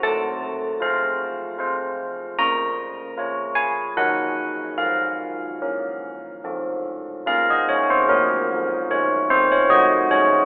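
Classical church-bell tune in Bb minor at 75 BPM in a straight 3/4, wintry and solemn, played by a solo carillon with up-front bronze bells, a padded clapper and a ringing minor-third overtone across Eb3 to Bb5, steeped in a long, wet cathedral reverb and narrowed by a telephone-like sound, with a new section opening at 7.3 seconds in this short excerpt cut from a longer piece.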